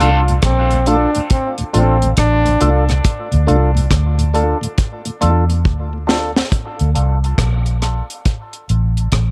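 A dark, round, foam-muted electric bass sits up front and punchy through this heavy, deep dub reggae cut, taken from a longer piece in D minor at 69 BPM in 4/4, tuned to A4 = 445 Hz, with a 64% swing on the sixteenths. A dry, mid-forward acoustic drum kit plays hi-hat, kick drum, rim click and snare drum, with a high-tuned snare, tight kick and rolled-off top, and a drum fill from 5.7 seconds closes the opening break. A brilliant, present trombone with light vibrato carries a pop-style second line through dub echo until 2.9 seconds. A hollow, nasal percussive organ stab with a fast attack and chorus sounds from the start until 8.9 seconds, while a mellow tonewheel organ with key click and slow rotary speaker sits in the background until 6.4 seconds. Brief touches of a slightly broken-up, picked electric guitar appear in the background, filtered and sent through dub echo, and a light reverb gives the mix a little space.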